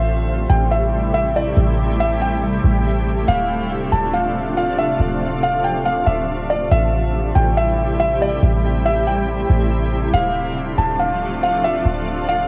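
A felt-muted upright piano carries a soft, intimate melody with audible action noise and analog delay, over a shimmering, ethereal pad with detuned chorus and cassette-tape colour, and a deep, boomy 808-style bass, all sounding together from the start. This spacious, melancholic cloud-rap cut moves in a half-time feel at 140 BPM in A minor, tuned to A4 = 444 Hz, alternating between Am7 and Dm7. The home cassette recording carries a small-room ambience.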